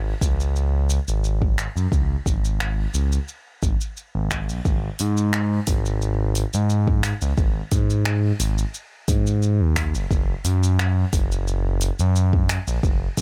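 A straight 4/4 pulse drives this mystical, hypnotic organic downtempo excerpt, where a smooth, detuned sawtooth-and-triangle synth bass with vibrato and a moving notch sits up front and pumps against the sidechain from the opening, joined at 0.2 seconds by a deep, layered electronic kick and a deep house kit of finger snaps, hi-hat and shaker re-recorded in a small room, all in a dry mix that shifts into a new section at 4.7 seconds.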